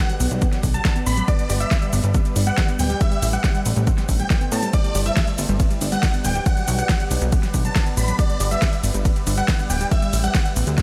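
A straight pulse drives this euphoric, soaring slice of uplifting trance, anchored by a punchy, overdriven electronic kick that sits up front from 0.4 seconds. Around it, a layered big-room kit adds a huge snare, metallic hi-hats, ride cymbal and shaker with its own overdrive, while a funky, plucky analog bass with a fast attack and decaying tone pumps with sidechain compression. The big supersaw lead carries the melody with a huge, detuned, compressed unison sound, roughened by vintage 12-bit sampler grit and trailed by a diffuse ambient delay. Beneath it, a lush unison pluck plays arpeggios in the background, and a dark, ethereal pad with an octave-up shimmer slowly evolves through chorus, phaser and built-in reverb. A barely audible downlifter opens the cut and ends by 1.3 seconds, as the harmony cycles through Bm, G and Am7 under a light reverb.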